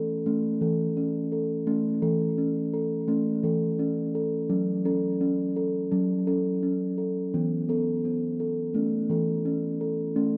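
A dark, warm production places the music in a moderate scoring-stage reverb with a touch of small-room ambience, giving the notes a gentle halo of space. This short passage, cut from a longer piece, is a dreamy, calm world-meditative piece in A major pentatonic at 85 BPM in 4/4, with a light swing on the sixteenths and tuning set to A4 = 441 Hz. A steel tongue drum plays solo from the start to 10.4 seconds, sitting up front and struck with firm rubber mallets. Its tone is round, pure and ringing, moving between E3 and A4, and a delay lets each note trail into the reverb. The harmony drifts from A to F#m at 4.5 seconds, touches E5, and settles back on A at 8.7 seconds, keeping the mood smooth and unhurried.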